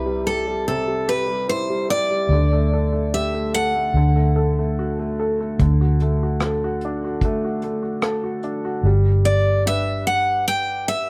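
This short excerpt of a tender, hopeful acoustic folk-pop ballad opens with a bright, picked steel-string acoustic guitar carrying the melody up front, its notes set in plate reverb, over a woody upright piano with long sustain and a round, foam-muted electric bass with a dark, amped punch. At a slow 74 BPM in a straight 4/4, the harmony moves from C through Dsus4 to D. At 5.6 seconds a vintage brush drum kit joins with hi-hat, tight kick and rim click, its sound smooth and rolled-off at the top in a studio room. The drums drop out at 8.6 seconds, just before the chord settles on G at 8.8 seconds for the closing stretch. The whole mix sits in light reverb, keeping the guitar, piano and drums close and intimate.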